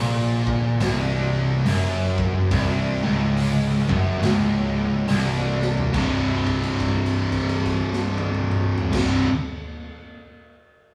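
Stoner and doom metal at a slow 70 BPM in 4/4 with a swung eighth-note feel, this brooding, hypnotic passage is cut from a longer piece and built on a C5 power chord. Three guitars grind out the low riff together from the start: a biting, bright overdriven guitar, double-tracked and up front, a dark fuzz guitar equally forward, and a second fuzz guitar sitting further back. Underneath, a growly picked electric bass with overdrive and fuzz rumbles in the background, while a very quiet vintage string machine adds shimmering, soft-attack violin chords with an ensemble chorus and a moving notch. The raw acoustic drum kit, saturated and gritty with a punchy kick, medium-tuned snare and pumping room sound, enters at 0.5 s and plays a fill from 5.5 s that leads into a held note beginning at 5.9 s. The whole thing sounds like a rough rehearsal-room recording, soaked in a wet stone-room reverb.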